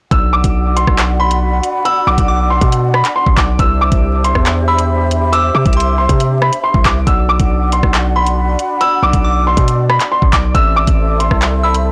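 A distorted, heavy 808-style bass with a noise layer drives this menacing, cold drill hip hop excerpt at 138 BPM in half-time. An up-front electronic drum kit of knocking kick, tape-warm hi-hats, handclaps and rim clicks plays beside it. A dark, low-pass-filtered concert grand piano carries a high melody in B phrygian over a breathy flute ensemble holding sustained chords with vibrato. A delicate, tinkling FM bell with chorus and digital delay enters at 1.2 s in the background, and the blown-out, overdriven recording carries vinyl crackle and little reverb.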